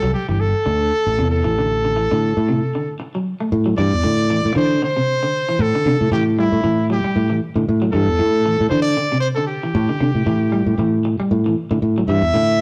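Captured as a rough rehearsal-room recording, this short cut from a longer afrobeat piece sits in a moderate stone room reverb that lends the trio an echoing, live-in-the-room presence. The groove moves at 116 BPM in 4/4 with a light sixteenth-note swing, and the mood is hypnotic and funky, centered in A dorian. Up front, a dark, round fingered electric bass anchors the low end with a direct tone, while an electric guitar at the edge of break-up plays twangy, slightly broken-up fingered arpeggios in a lower register. Over them, a brilliant solo trumpet carries the melody with a smooth top, light vibrato and a pop-style delivery, also placed forward in the mix. The harmony opens on Amadd11 and shifts to A7(no3) at 3.5 seconds, where the second section begins and continues until the cut at 12.6 seconds.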